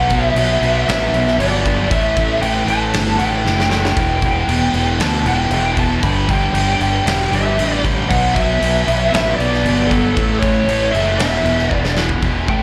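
Driving and menacing, this hard rock excerpt in E minor moves at 116 BPM in a straight 4/4, with a dark, lo-fi lead guitar through a small cranked amp carrying the melody over a double-tracked overdriven electric guitar riff with slapback echo, an up-front fuzz fingered electric bass, and a huge arena drum kit with bright cymbals, a fat snare and punchy kick that enters at 0.1 s and drops fills at 3.5 s and 11.7 s, all heard through a venue's PA with light reverb and club ambience as the chords pass from Bm through A5, Em and G5 to a closing E5.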